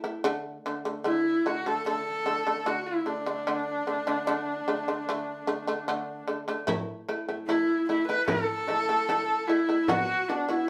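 Proud and vast in mood, this Mongolian folk piece moves at a steady 75 BPM in a straight 4/4, set in a D gong mode and cut from a longer performance. A powerful, plectrum-plucked shamisen opens alone, its fretless, buzzing arpeggios sitting up front with a percussive attack. At 1.1 seconds a bright horsehead fiddle takes up the melody, its bowed horsehair strings giving a nasal, husky, earthy voice with light vibrato and portamento, placed up front yet carrying a distant quality. When the second section arrives at 6.7 seconds, a warm frame drum joins with a small-room sound, and the harmony, which began on D5, shifts to A5 before moving to B5 near the end. The band plays live together in one room, wrapped in a wet studio reverb.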